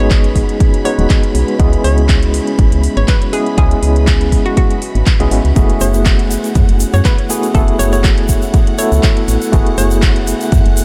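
A tape-warm, lightly reverberant deep house excerpt with a hypnotic pull, built on a punchy, up-front electronic kick and a house kit of handclaps and metallic hats, while a woody, round FM bass with tube saturation pumps beneath an overdriven, barky tine electric piano playing gritty stabs through a combo amp with fast tremolo and delay. A hollow, bouncy square-wave pluck carries the melody through chorus, cassette tape and diffuse ambient delay until 10.0 s, over a moody, very quiet ambient pad and a silky string machine in the background, as the chords move from G#m7 to C#m7 to F#m11. At 5.6 s a grainy egg shaker joins the groove.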